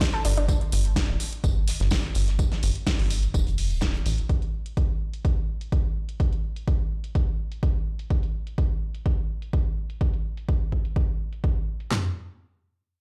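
Dreamy and expansive, this progressive house excerpt moves at 126 BPM in a straight 4/4. A very quiet, clear bowed string section holds sustained chords only in the opening 0.5 seconds, its vibrato giving a focused ensemble sheen. Up front, a deep house drum kit with a punchy kick, fat snare, handclaps and toms runs through to 12.0 seconds, layered with a big-room dance kit whose huge snare and metallic hats sit behind low-pass filtering and a filter sweep until 11.9 seconds. From 0.2 to 4.2 seconds a tight sequencer bass drives with a sawtooth and square-wave filter pluck, tube saturation and sidechain pumping, while a background acoustic kit adds hi-hat, a medium-tuned snare and tambourine with a rolled-off top, high-pass filtering and pumping hats. The harmony drifts through a Dmadd11 chord, and the mix, dry in places, opens into the space of a large studio reverb heard on a big sound system in a bare room.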